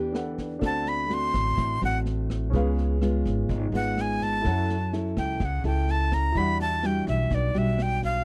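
A breathy, bright jazz flute carries the melody up front in this relaxed, romantic bossa nova excerpt, entering at 0.7 seconds with vibrato, a crisp chiff on each attack and a faintly reedy edge. Beneath it, a thumb-plucked nylon-string guitar in a classical manner and a woody, thumpy upright bass with gut strings hold down the accompaniment at a straight 126 BPM in D major. A baby grand piano sits in the background, intimate and natural with short sustain and audible action noise. A vintage brush drum kit of kick, rim click and snare sounds dark and smooth, its top rolled off, with a punchy kick and a small-room character. The harmony moves from A9sus4/E through D7, C#7 and F#m7 to Em9, and the dry, close studio sound with little reverb gives the whole excerpt a 1970s intimacy.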